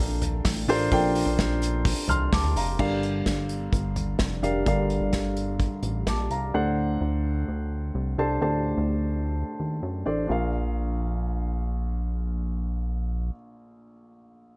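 A dark, woody upright piano and a glossy, chorused synth bass open this hopeful piano-driven pop passage, which is cut from a longer piece. An acoustic drum kit joins at 0.2 seconds, played with bundle sticks, with a punchy kick, a medium-tuned snare, hi-hat, toms and crash cymbal sounding airy and polished in a small room. The drums drop out at 6.4 seconds, as the harmony moves from a major-seventh chord to a dominant seventh and later settles on a plain major chord. The retro bass blends pulse and sawtooth tones with ring modulation and a plucky filtered attack, and it holds until 13.3 seconds, leaving the vintage-toned piano to carry the final moments. All three parts sit up front, framed by a light, small-room reverb.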